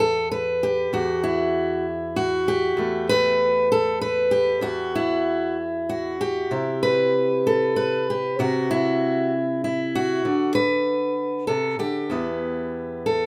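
A rubato piece in 3/4 at around 97 BPM, this intimate, wistful folk fragment is cut from a longer piece for solo fingerpicked steel-string acoustic guitar in E minor, tuned slightly sharp to A4 = 445 Hz. The guitar sits up front with a bright, fresh-stringed tone and audible finger squeak, ranging from E2 to B4 in a light reverb. Its harmony moves from Emadd9 to C at 6.5 seconds, then Bm/D at 10.2 seconds, before settling back on Em at 12.1 seconds.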